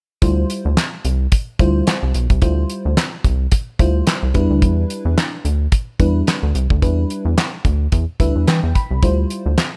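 Early-eighties boogie funk with a late-night, funky mood, this short excerpt pairs a rubbery, saturated square bass and a damped 70s drum kit with a fat snare, tight kick and handclaps up front beneath a lush, dreamy FM electric piano with a soft pad layer and chorus, moving from Dm11 to Em7 at 4.3 seconds before an electric piano fill at 7.9 seconds, all in light studio reverb.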